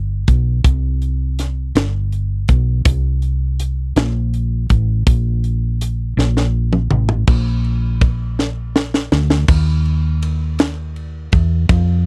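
Jubilant yet reverent, this slow gospel excerpt in 6/8 at 54 BPM pairs a round, punchy, amped hollow-body electric bass sitting up front with a tight acoustic funk drum kit, heard with a high-tuned snare and dark cymbals, that plays fills at 6.2 and 8.4 seconds in a dry, close 1970s-style studio sound.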